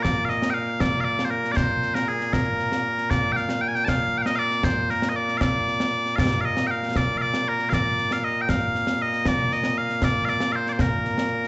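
Ceremonial and stirring, this short excerpt of Scottish pipe music moves at 78 beats per minute in a straight 6/8, counted in dotted quarters, and sits in Bb major. Loud bagpipes carry the melody from start to finish, their piercing, continuous tone standing up front as a solo voice that ranges from Bb2 to A5, touched by a slapback echo. Beneath them, concert snare drum and concert bass drum play throughout, sounding acoustic and close, with dark cymbals. The performance is heard as a live gig through a venue's sound system, with club reverb, a small room ambience and a top end that stops at 8.0 kHz. The 11.5 seconds are cut from a longer piece and stay in a single section.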